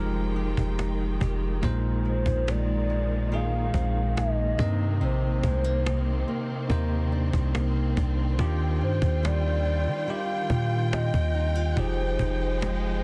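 Romantic and dreamy, this contemporary R&B excerpt in Eb major at 71 BPM opens on a bright, bell-like tine electric piano, lush, distant bowed strings, a small fingerpicked nylon-string guitar in the background and a deep, boomy 808-style bass up front; a snappy, close cajon with vintage 12-bit sampler grit enters at 0.4 seconds, and a hollow, woody clarinet-like synth lead with chorus, delay, vibrato and portamento carries the melody from 2.1 seconds over Fm9, Bb9sus4, Cm9 and Ebmaj9 chords, set in a small room and a dense, heavily limited modern master.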